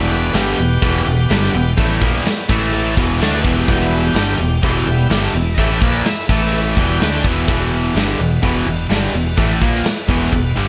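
Classic rock with a brooding, driving mood, this short excerpt from a longer piece moves in a straight 4/4, rocking mostly on E minor with brief turns to A5. A big rock drum kit sits up front in a bright stone room, its punchy kick, medium-tuned snare and crash cymbals sounding airy and polished, while a very quiet, metallic cowbell taps along from a small room. Three overdriven guitars play riffs in the background: a bright cranked stack guitar, a warm, compressed guitar with spring reverb, and a double-tracked guitar also touched with spring reverb. A bright fingered electric bass, recorded direct, anchors the low end. Behind them, a full, shouting tonewheel organ holds sustained chords through light overdrive and a slow rotary speaker, and the arrangement shifts into a new section at 7.5 seconds.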